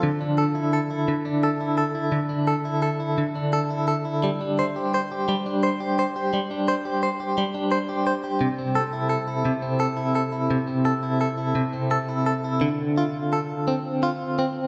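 Swaying and romantic, this short pop excerpt in a straight 6/8 features a lone clean electric guitar, bright, twangy and compressed with a pulsing tremolo, picked up front through the long wash of a church reverb as it drifts from Dsus2 through Gsus4 and C6 before settling on Dm7 at 12.6 seconds.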